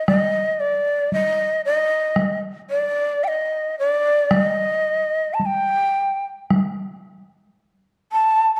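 Meditative and solitary, this short cut from a longer piece of Japanese traditional chamber music moves at a slow 56 BPM in 2/4, its uneven beats stretched by rubato. A breathy, mellow shakuhachi carries the melody up front from the opening through 8.6 seconds, its bamboo tone colored by vibrato, tongued chiff and rolled-off highs. Solo taiko drums, struck with hard sticks in a live room, sit close alongside until 6.8 seconds, all within a dark production and a moderate stage reverb.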